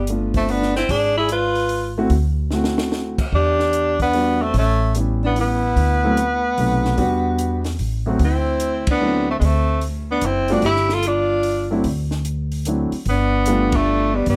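A warm tenor saxophone, up front with vibrato and scooped notes, carries the melody in this playful, swinging small-group jazz excerpt in 3/4, joined by a clear, close-miked alto saxophone on a second line, woody, thumpy pizzicato upright bass, grand piano accompaniment and a dry cocktail drum kit with dark cymbals, a high-tuned snare and a punchy kick, all in moderate studio reverb, with a drum fill at 2.5 seconds and band accents at 8.8 and 13.7 seconds.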